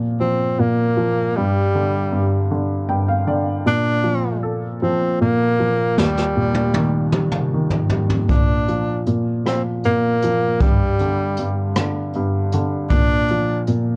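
This six-eight pop ballad sways gently with a tender mood, cut from a longer piece. A felt-muted upright piano carries the accompaniment from the start, its sound mellow and intimate with a soft, vintage character, and it adds a short fill at 2.5 seconds. Above it, a breathy tenor saxophone sings the melody in a clear pop style with vibrato, sitting up front as the solo voice. A jazz kit played with brushes enters at 6.0 seconds with a fill that runs to 8.3 seconds, bringing a boomy kick, a medium-tuned snare and a roomy, rolled-off top, roughened by a gritty 12-bit sampler texture. Light reverb and a cassette tape quality color the whole recording.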